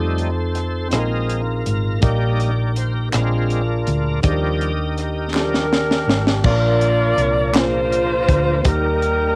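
A bright, shouting tonewheel organ, lightly overdriven with key click, chorus vibrato and a slow rotary speaker, solos until 6.4 seconds in this soulful, uplifting slow gospel excerpt in 6/8 at 54 BPM in Eb major, supported by a clean tine electric piano, a dark, round, punchy hollow-body bass and a tight funk drum kit with dark cymbals, a high-tuned snare and a cassette-tape tinge. Crisp group handclaps sit in the background from 3.1 seconds, and a jazz-style saxophone section with vibrato carries the melody up front from 5.4 seconds, all heard through light reverb and small-room ambience on a home cassette recording.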